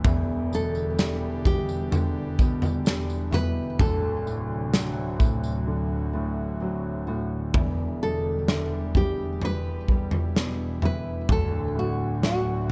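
This emotional, longing pop ballad in E minor moves at a slow 64 BPM in straight 4/4, with a fingerpicked nylon-string guitar melody carried up front from 0.5 seconds over a clear, deep-bassed concert grand piano, an airy, breathy chorused pad sustaining chords, a background nylon-string guitar playing full-bodied arpeggios, a jingly, close tambourine that drops out at 5.7 seconds for a break, and an up-front acoustic drum kit with tight kick, medium-tuned snare and toms in a pumping small room, all set in a dark, warm production as Em7 and D7 give way to Em7 and Bm7/D.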